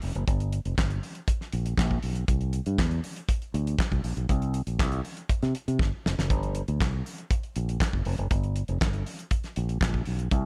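A fingered electric bass and a damped 70s drum kit open together in this sultry, danceable disco excerpt in G dorian, moving at 120 BPM in a straight 4/4. The up-front drums bring a fat snare, a tight kick, hi-hat and handclaps with a rolled-off top and gated reverb, and a drum fill arrives at 5.8 seconds. The warm bass, direct and amped, sits just as close, while the overall sound stays nearly free of room reverb.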